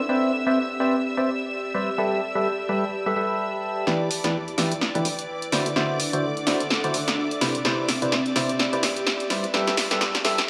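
Joyful and uplifting, this swung piano house excerpt opens on clear symphonic strings with vintage sampler grit and an airy, breathy chorused pad, while a hollow, nasal organ stab carries the riff through dub echo over chords moving from Cmaj9 to G69 and Em7. At 3.9 s a punchy analog drum machine enters up front with tape-toned hi-hat and snare, starting a build-up with a drum fill and filter sweeps on the stab, and a round, very quiet FM bass joins at 4.2 s. A lush hall reverb surrounds the sound.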